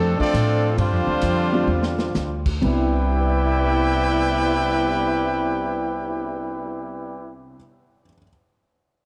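Big band swing in C major at 123-142 BPM, joyful and swinging, this brief cut from a longer piece opens by slowing down as a clear, close-miked trumpet section with vibrato carries the melody over a tight trombone section's second line and a woody, growly pizzicato upright bass, while an intimate, very quiet grand piano with audible action noise joins at 1.5 seconds, a vintage kit with dark cymbals adds a fill at 1.7 seconds, and the harmony moves from Dm7 through G7sus4 to a Cmaj9 at 2.6 seconds under light reverb.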